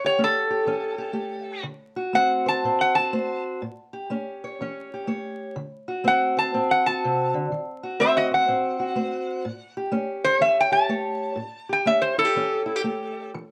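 A loping swung 4/4 carries this gritty, laid-back acoustic country blues fragment, where a metallic, nasal resonator slide guitar sings the melody up front over a boxy parlour-style fingerpicked steel-string guitar, finger squeaks and all, moving through seventh chords and a diminished turn, all heard through light reverb and the warble, crackle and pitch drift of worn old tape and vinyl.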